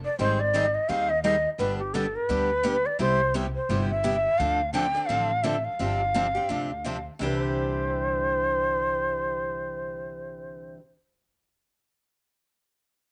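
Swinging and playful, this short cut from a longer piece of acoustic string swing sets an up-front, breathy bamboo shakuhachi with vibrato, chiff and a slapback echo over a woody, growly pizzicato upright bass and two bright picked steel-string acoustic guitars, one showing finger squeak and the other boxy and very quiet, all heard in a dry outdoor recording with nothing above 10.3 kHz.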